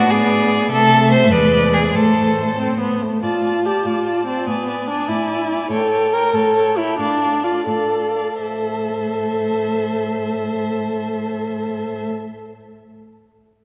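An up-front, dark viola with expressive portamento stands out in this stormy, dramatic fragment of a quick classical-period string quartet movement in A minor and 6/8 at about 80-98 BPM in dotted quarters, where two rich, smoothly bowed violins with vibrato carry the melody and a second line, a warm cello with portamento holds the bass, the pace slows from 5.1 to 8.4 seconds, and a wet concert hall reverb envelops the quartet.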